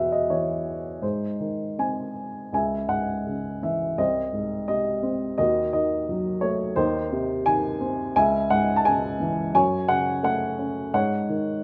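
A single E5 from a dark upright piano opens this short cut from a longer classical piece, followed by a G# before the harmony settles onto C# minor at 2.5 seconds. The mood is relaxed and gently warm, a lyrical solo performance in C# harmonic minor at about 86 BPM in 4/4, played with rubato so the beats fall unevenly. The upright sounds mellow and woody, with a natural, up-front presence spanning from B#1 up to A5. After the brief opening, a second section moves through G#/B#, D#dim, G#/D#, back to C#m, then F#m, and pauses on an unresolved G#sus4 as the recording stops at 11.6 seconds. A moderate recital hall reverb gives the instrument a sense of space around its close, intimate tone.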